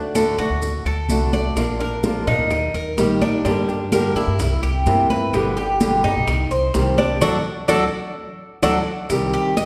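This is Latin music in the Cuban son and guajira style: a danceable, warm passage cut from a longer piece, with a straight four-beat feel. Up front, a fingerpicked flamenco guitar carries the accompaniment, finger squeaks audible, alongside a Cuban tres whose picked double strings, some doubled at the octave, ring out metallic arpeggios. Beneath them, a dark, thumpy pizzicato upright bass with gut strings anchors the chords as they move through D, Bb, Eb, Gm, C7, G and Cm before returning to D. The percussion fills in around them: damped, high-tuned congas played with soft hands in the background, very quiet woody claves, grainy, mellow maracas with a compressed, saturated edge, and tight bongos that join at 1.6 s. The band hits an accent from 7.2 s, and a drum fill arrives at 8.2 s, all bathed in the lush reverb of a church or concert hall.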